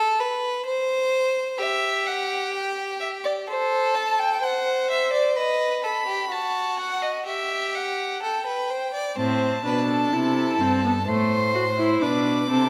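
Set in a moderately reverberant scoring stage, this driving, serious baroque-style fugue for string quartet in A minor moves at 63 BPM: a clear, smooth violin opens alone at 0.0 seconds, a rich, vibrato-laden violin melody joins above it at 1.6 seconds, and at 9.2 seconds a focused viola and an expressive cello with portamento enter together beneath them in this fragment cut from a longer piece.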